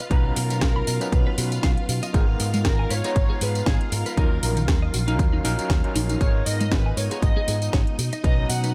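This short nu-disco excerpt opens with a dark, woody violin section carrying the melody, colored by vintage 12-bit sampler grit and tape echo, over lush string-machine chords that pump against the beat through an ensemble chorus. A clean, compressed electric guitar riff and a house drum kit with a cracking snare, metallic hats and tambourine start at the same moment. At 0.1 seconds an overdriven, barky tine electric piano joins with medium tremolo, along with a punchy picked bass run through an envelope filter and an up-front electronic kick. The groove sits at 118 BPM in 4/4 with a light swing on the sixteenths, moving through G# dorian on chords such as Bmaj9, G#m69 and D#m9. The mood is cosmic and groovy, and the mix is dry overall, with studio reverb only on the drums.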